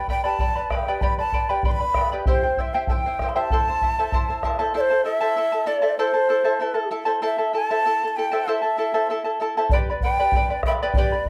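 Earthy and festive, this short cut from a longer Andean folk piece moves in a straight 2/4 feel, with a breathy large quena carrying the melody in a woody, end-blown voice marked by soft attacks, vibrato and expressive phrasing. A bright, fingerpicked charango shimmers up front on its doubled strings, while the deep, dark bombo sounds from a distance and drops out at 4.6 seconds before returning at 9.7 seconds. The ensemble sits in a moderate studio reverb as the harmony moves from G through C to A minor and back to G.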